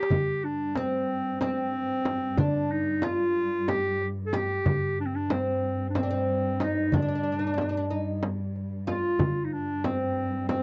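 This Turkish makam ensemble piece, cut from a longer work, moves in a soulful, melancholic mood in makam ussak on G, counted in 7/8 at 185 beats per minute in eighth notes with a straight feel. A classical-style clarinet carries the melody as the up-front solo voice, its tone warm yet distant and roomy, ranging from C4 to A4-31c. Beneath it, a fretless, woody oud with double strings plays a plectrum-plucked second line between C4 and G4. A lush, symphonic cello section sustains a bowed G2 drone from 0.1 seconds, its sound rich, focused and biting with vibrato. The percussion pairs a crisp, high, metal-shelled darbuka struck with hard hands against a close, dry frame drum played with soft hands. The whole is a dry, close recording in a 1970s studio style with a moderate booth ambience.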